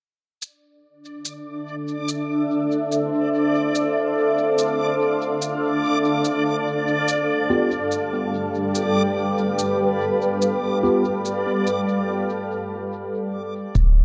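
Ambient dub at a spacious, meditative pace, where an overdriven, dub-echoed shaker sets in just before a cloudy, granular pad holds sustained chords up front under a filter sweep, joined by a reversed, dreamy swelling texture and mellow tine electric piano stabs through a phaser from 7.5 seconds, before a break leads to a round, deep analog bass and a soft overdriven kick arriving at 13.8 seconds in a dark production with moderate spring reverb.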